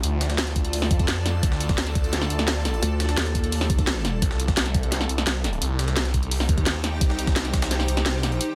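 A swirling, saturated detuned saw bass, an up-front drum and bass kit with cracking snare and bright hats, a very quiet gritty pitched-up breakbeat kit and a cloudy, evolving granular pad pumping under its own reverb open this futuristic, dark technical drum and bass excerpt at 172 BPM in D phrygian, with an overdriven, knocking electronic kick arriving at 0.6 seconds and a heavy, chorused pluck wobble bass pulsing from 2.8 to 4.2 seconds as the harmony moves from Dm to Cm in a dense, heavily limited mix.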